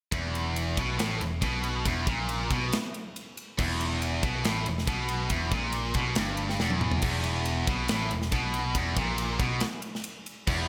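A powerful, swaggering hard rock passage opens at 0.1 seconds with everything in at once: two distorted electric guitars driving a low riff on an E5 chord, an overdriven bass and a tight metal drum kit, all at 139 BPM in a straight 4/4. The high-gain guitar is picked and bright, while its tight, up-front partner carries a slapback echo that gives the riff an extra snap. Beneath them, the picked bass growls with an amped, punchy bite down in the low register. The acoustic kit sounds polished and airy, with a tight kick, a medium-tuned snare, bright crash and ride cymbals, and toms, and it slips in a short fill from 6.6 to 7.0 seconds. A moderate hall reverb lends the whole mix a big arena sound, and the clip, cut from a longer piece, runs just under 11 seconds.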